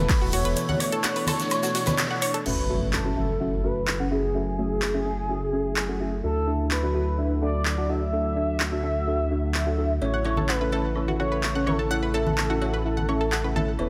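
A smooth, expressive synth lead with vibrato carries the melody from the start, its sawtooth-and-triangle tone coloured by analog chorus and dub echo, in this expansive, emotional progressive house excerpt cut from a longer piece. Beneath it a lush, thick unison pad holds sustained chords with slow attack and long release, pumping against the sidechain, while a round, deep analog bass sits up front with a mellow, evolving sustain. A layered deep house kit of crash, handclaps, hi-hat and woodblock drives the straight groove, joined briefly at the opening by a big-room acoustic rock kit of filtered hi-hat, shaker and snare in the background, and by ringing, hard-handed woodblock, cowbell and congas. A detuned, bright analog pluck spins arpeggios through chorus and delay in the opening seconds and returns near the close, when the percussion also comes back at 10.0 seconds. At 2.5 seconds a background impact marks the shift into the second section, where a soft, dark chord stab with sub octave, chorus and phaser enters and a filter sweep runs on the pad, as the harmony moves from Esus4 through F#m7 and Dadd9 to A, all in a light reverb.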